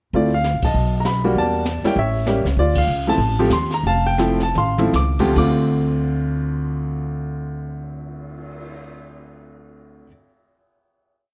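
A swung 4/4 pulse in D minor sets this brief, complete jazz piano trio piece moving at a tempo between 138 and 198 BPM, with the band slowing down from 2.6 to 5.4 seconds before settling onto a long final chord. The mood is late-night and moody, carried by a short progression of Dm7, B, Em7b5 and A7b9 that returns to Dm7, with band accents punctuating the opening bars. The clear, intimate baby grand piano sits up front, stating a motif-based melody in song-like phrases and filling beneath it with syncopated, rootless-voiced comping, its action noise audible and natural. The pizzicato upright bass, also up front, has a woody, growly steel-string tone and plays in a two-feel. The brush kit sounds airy and polished, with sweeps on a high-tuned snare, dark cymbals, a boomy kick and a short drum fill around 4.6 seconds, and it falls silent at 8.7 seconds while the piano and bass ring on. Light reverb gives the trio a gentle sense of a studio room.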